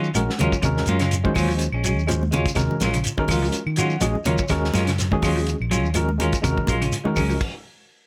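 Afrobeat with a funky, intense drive, this cut-out passage rides a single minor-eleventh chord as a round, punchy fingered electric bass and a soul drum kit with fat snare and tight kick anchor the groove. Two clean semi-hollow electric guitars join in, one playing subtle-chorused arpeggios in the background, the other firing stabs through slapback echo and plate reverb, while an overdriven tine electric piano adds barky, gritty accompaniment with fast tremolo and adds fills at 0.0 and 3.5 seconds. Grainy shekere, woody claves and soft-handed, high-tuned congas fill out the percussion, and the whole band drops into a stop at 7.4 seconds.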